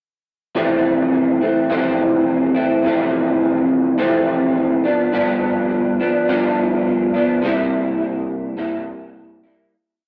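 Indie pop with a laid-back, dreamy mood, this short whole piece is a lone electric guitar through a small old amp, bright, twangy and slightly broken-up, up front in slow strummed barre chord shapes washed in ensemble chorus and vibrato, moving from Fmaj7 to G7 to C7 inside a moderate studio reverb and the lo-fi haze of a home cassette recording before fading out from 7.4 seconds.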